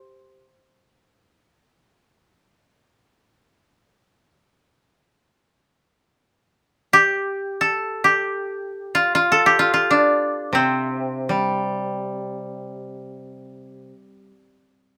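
Dry, woody and up front in a moderate studio room, this calm, austere excerpt of Japanese chamber music in free time features a fingerpicked koto carrying the melody from the start until 13.7 seconds, joined by a softer, lower koto accompaniment from 10.5 seconds.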